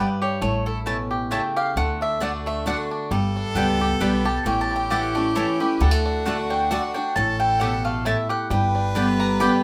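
A lilting 3/4 swing at 133 BPM drives this rustic, lively bluegrass excerpt in D major, where a woody, double-strung mandolin carries the melody over a bright, up-front picked steel-string guitar, twangy fingerpicked banjo arpeggios, warm stabs from a second mandolin and a pizzicato upright bass, until a clear, nasal fiddle with light vibrato joins at 3.1 seconds to add a second line, all set in a wet studio ambience.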